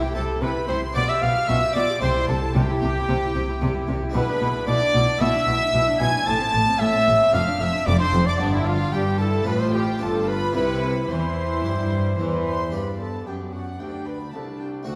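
A baroque-style concerto movement in C major, festive and brilliant, moves at a straight 112 BPM in 4/4 in this 15-second passage cut from a longer piece. A dark, close-miked solo trumpet carries the melody in classical style, joined above by a violin section that also carries the melody and supported by a second violin line sitting in the background. Violas fill the middle with a smooth-topped, gut-string tone, while a nasal cello section and a reedy double bass section, entering at 0.2 s, anchor the bass with light vibrato in period style. An airy harpsichord with two sets of strings plucks its accompaniment in the background in Italian style. The harmony moves from C through G7/B, E7/B, Am and Dm7/F to a cadence on C at 10.6 s; the double basses stop at 12.7 s as the music turns to G. A reverberant recital hall places the ensemble further back in the room.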